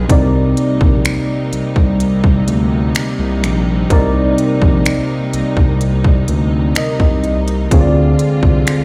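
Contemporary R&B in C minor at a slow 63 BPM, sensual and longing, with a clean, up-front tine electric piano coloured by analog chorus and a close, bowed studio string section holding sustained chords over a sawtooth-edged, wave-folded synth bass that glides with portamento and vibrato, while an electronic trap kit of finger snaps, crisp hi-hats and a hard-clipped kick sits forward, all heard through the stone-room reverb of a big sound system in a bare room as the harmony rests on Cm7 before moving to Dm7b5 at 7.7 seconds in this brief cut from a longer piece.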